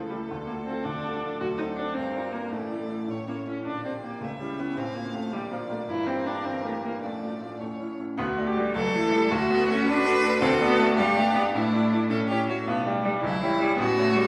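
Graceful and cheerful, this quick classical-period piano quartet movement in 6/8 at 107 BPM sets a distant, vibrato-laden violin melody over a rich, focused cello second line, while a clear, up-front baby grand piano with long sustain and a smooth, even viola supply the accompaniment, all bathed in a wet scoring-stage reverb as the music turns from D minor to D major at 8.2 seconds in this excerpt from a longer piece.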